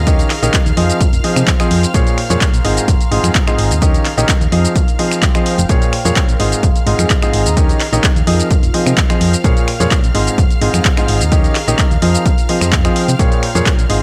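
Piano house with an energetic, soulful mood, cut from a longer piece, built on a punchy electronic kick sitting up front and an analog drum machine of finger snaps, handclaps, hi-hat and shaker, both re-recorded in a large room, under a round, dark FM bass that pumps with the sidechain. A polished grand piano riff with dub echo leads from 0.1 seconds over a looping Eb7, Fm7, Bbm7, Ab6 progression, while a rich, biting symphonic string section holds sustained chords high in the background. Alongside them sits a warbling, nostalgic lo-fi pad of detuned sawtooth and triangle tones, treated with chorus, phaser and built-in reverb, all in a lightly reverberant mix.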